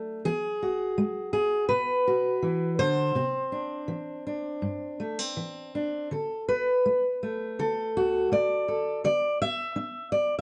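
Folk in D mixolydian, a pastoral and peaceful solo piece at a loose, rubato 83 BPM, features an up-front, fingerpicked steel-string acoustic guitar with warm fresh strings that moves from Eadd9 at 0.3 seconds to Cadd9 and settles on D5 at 6.1 seconds, set in a moderate studio reverb with a dark, warm production across this brief cut from a longer work.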